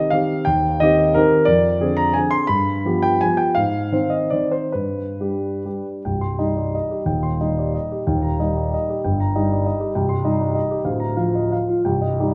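A concert grand piano carries this short classical excerpt alone, its tone warm and up front, with a deep bass and long sustain that let chords ring across the full span from C1 to C6. The music is a romantic dance in triple time, set in C minor with dotted rhythms, and the feel is rustic and proud. The tempo is elastic, played with rubato and moving anywhere between 126 and 205 BPM. The first half turns through C minor, G7 and A-flat toward a G chord, and from 6.1 seconds a second section opens on C minor, brightens toward E-flat, and closes on B-flat over D before the cut at 12.3 seconds. A wet recital hall reverb surrounds the instrument, giving the sound a spacious, resonant setting.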